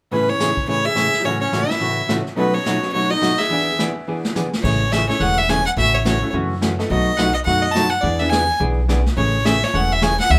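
A rich, biting fiddle with light vibrato and an airy bow leads this cheerful, down-home western swing excerpt in A major at a brisk 212 BPM, its earthy tone sitting close and up front. A dark, clean hollow-body jazz guitar backs it prominently, while a very quiet, jangly tack piano adds metallic sparkle and a warm, classical-style clarinet plays a soft second line in the background until 3.8 seconds. A vintage brush drum kit with dark cymbals and a tight kick plays a fill at 4.1 seconds, and a woody, thumpy upright bass with gut strings enters at 4.6 seconds, all heard as a band playing live in a modest studio room.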